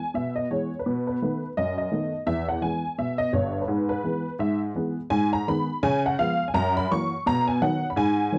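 A detuned, jangly honky-tonk upright piano plays alone and up front through this short, exuberant stride jazz fragment, cut from a longer piece, swinging playfully at 168 BPM in 4/4 across a range from G1 to C#6. The harmony starts in E major, moving through E, B7 and E/G#, then shifts toward B major at 5.1 s via G#m, C#7 and F#7 before landing on B. Light reverb and worn cassette tape with a warbly pitch drift give the woody, vintage instrument an aged, wobbling character.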